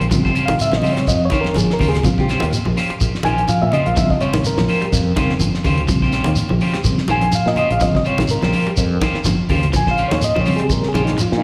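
Afrobeat at 125 BPM in Bb dorian, intense and defiant, this short cut from a longer piece rides a swung sixteenth feel over a single Bbm69 chord, with a reedy electric piano taking the solo through fast tremolo and slapback echo. Two slightly broken-up, twangy electric guitars sit beneath it, one picking low arpeggios with slapback echo and the other firing higher stabs through analog delay, while a growly fretless bass with lush chorus anchors the low end. A damped 70s kit with a fat snare and tight kick drives the groove alongside very quiet, hard-hand congas and a grainy shekere, all heard as a live gig through the venue's PA with recital hall reverb.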